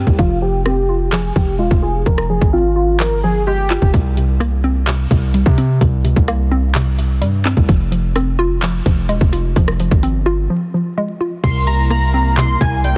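Brooding and eerie, this half-time trap and hip hop excerpt at 128 BPM in F harmonic minor opens with warbling, nostalgic lo-fi synth keys carrying the melody under a filter sweep through 3.9 seconds, over a hollow, bouncy square pluck and a punchy, heavy 808-style bass moving through chords from Fmadd9 to Fm. A trap drum kit with a hard-clipped kick, metallic hats, handclaps, rim clicks and crash cymbal sits up front with vintage 12-bit sampler grit and a softly clipped snare, all in a dry, dense, heavily limited mix dusted with vinyl crackle. At 11.4 seconds, on a C7 chord, the keys return alongside a soft, flute-like pad, and from 11.7 seconds a delicate, tinkling synth tine bell with phaser and digital delay glints in the background.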